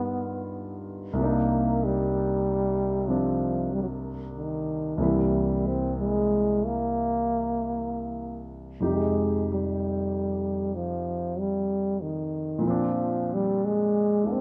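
A jazz ballad at a slow 63 BPM in 4/4, with a gentle swing on the eighth notes and a late-night, tender mood, cut from a longer piece. A mellow trombone carries the melody throughout the 14.4 seconds, taking a solo in a smooth jazz style with vibrato and scooped notes, sitting up front between Eb3 and C4. A grand piano accompanies it the whole way, its natural, warm tone spanning a broad range from C2 to A#4 and also placed up front. The harmony moves from G7alt through Cm9 and C7 to Fsus2, arriving on Bb9 at 12.6 seconds. The duo sounds as if playing live together in a stone room, its wet reverb adding a soft halo, while the top end stays rounded and dark.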